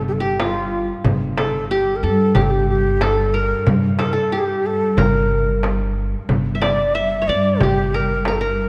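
A straight 4/4 pulse at 92 BPM carries this longing, hypnotic Arabic maqam ensemble piece in G minor, with a crisp metal-shell darbuka played with soft hands and a vintage, band-limited frame drum entering at 0.4 s and stopping at 8.4 s. Up front, a breathy, reedy ney sings the melody with vibrato and tongued notes, while a bright-edged qanun plucked with fingerpicks traces a second line in the same register and a woody pizzicato upright bass anchors the low end. Beneath them a lush bowed cello section holds a drone on G2, all set in a dark production with moderate concert hall reverb in this excerpt cut from a longer piece.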